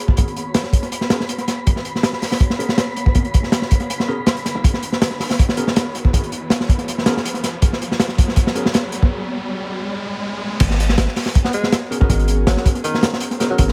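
Drum and bass with a jungle edge at 161 BPM in G# minor, this dark, frenetic excerpt opens on a G#m11 chord, with a very quiet, ethereal pad put through a filter sweep and a breathy, wind-like noise texture drifting behind a crunchy, saturated breakbeat kit that sits up front with a punchy kick, dark cymbals and analog delay. A deep, boomy 808-style bass and a clean tine electric piano with medium tremolo and dub echo sit in the background while an electronic riser builds from 1.3 seconds, leading to a short break at 9.1 seconds. The drop lands at 10.6 seconds as the bass returns, and shortly after, at 11.4 seconds, a mellow tenor saxophone with light vibrato and scooped notes takes a jazz-style solo melody, all within an echo-heavy mix and a small room.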